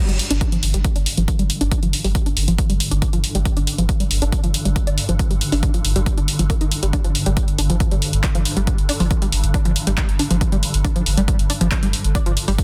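This excerpt of driving peak-time techno opens at 0.1 seconds with a tight sequenced synth riff, a deep sub bass and a punchy analog drum machine with overdriven handclaps and hi-hat, all arriving together at 138 BPM in a straight 4/4. The electronic kick drum joins at 0.4 seconds, overdriven and sitting up front as the loudest element, while a swarming drone of detuned, granular sine tones sits behind from 0.2 seconds with a slow attack, long release and its own reverb. The sawtooth and square-wave riff is detuned and plucky, coloured by chorus, phaser, overdrive and delay, with a filter sweep running through the full 12.6 seconds. Underneath, the round, mellow sub bass holds on G1 through a low-pass filter. Sidechain pumping breathes through the drone, riff, bass and drum-machine hats, giving the dense, heavily limited mix a relentless, intense push in a digital ambience.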